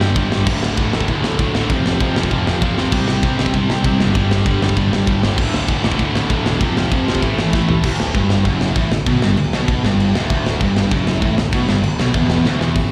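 This rowdy punk rock clip sounds like a live gig heard through the venue's PA, with recital hall reverb giving the whole band a roomy, echoing spread. At 195 BPM in a straight 4/4, three picked electric guitars churn out riffs from start to finish: a bright, scooped, double-tracked high-gain part, a dark, sludgy overdriven part with slapback echo, and a tight distorted one, all sitting in the background. Beneath them a fuzz-drenched picked electric bass growls with a punchy, direct-and-amped bite. Up front, the acoustic metal kit drives the piece on crash, hi-hat, kick, ride, snare and toms, its medium-tuned snare and tight kick carrying a mellow, rolled-off top, with fills at 2.8 seconds and again just before 7.8 seconds, where the riff moves into a new section built around D. The chords move through power-chord shapes on D, F, C, G and A, keeping the rebellious energy high until the clip cuts off at about 12.9 seconds.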